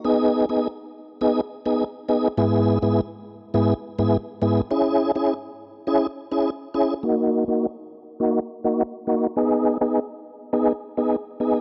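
A dry, gritty recording with light digital reverb carries this bouncy, sultry dancehall cut from a longer piece at 103 BPM in Eb phrygian, where a solo tonewheel organ sits up front with a round, dark, clean tone, audible key click, chorus vibrato and a fast rotary speaker, moving through Abm, E/G#, Dbm and Ebm chords before a filter sweep colours it from 7.0 to 11.6 seconds.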